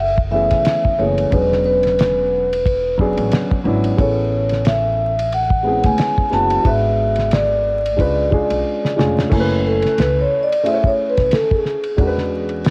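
Over a swung sixteenth-note groove, a cloth-damped, thuddy drum kit with a fat snare, tight kick and dark cymbals carries a mellow, smoky jazz-hop excerpt, its cassette-tape tone sitting up front beside a woody pizzicato upright bass. A vintage-sounding baby grand piano, also touched by cassette tape, lays down extended jazz harmonies under a ringing, metallic vibraphone played with soft mallets. After a drum fill at 8.7 seconds, the vibraphone takes a solo from 9.3 seconds, all wrapped in small-room ambience and vinyl crackle that give the piece a homemade feel.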